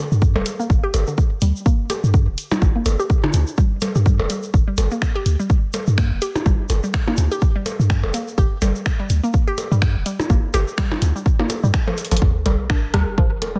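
A punchy, tape-warm electronic kick sits up front in this sparse, clinical minimal techno excerpt, joined by a deep sine sub bass with a pitch-drop attack and a hollow, detuned square-wave pluck riff that bounces through chorus, dub echo and sidechain pumping. An analog drum machine's finger snaps and hi-hat, overdriven percussion blips and a rim click, both heard in a large room, mingle with a grainy, saturated tube shaker over a swung groove. After a drum fill at 12.0 seconds, the drop at 12.2 seconds brings a Gm chord and a background sub drop and impact, followed at 12.4 seconds by a bright, pulsing gated texture with built-in reverb.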